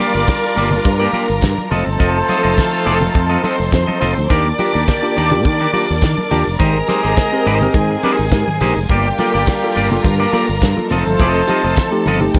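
This driving, danceable disco excerpt opens all at once on a damped 70s drum kit with a fat snare, tight kick and hi-hat in a gated reverb, joined by a clean, fingered electric guitar, warm horn stabs and a jingly tambourine tucked into the background. A fingered electric bass sits up front with a direct, amped tone, and close, dry congas slip in at 0.7 seconds. Two studio string sections fill out the sound: a lush, focused line sits high and distant, while a smooth, even bed of sustained chords stays further back. The horn section has a roomy, pop-style character with light vibrato. At 4.3 seconds a worn, slightly out-of-tune tine electric piano enters through a combo amp, bathed in plate reverb, as the minor-seventh harmony moves through major-seventh colours and returns.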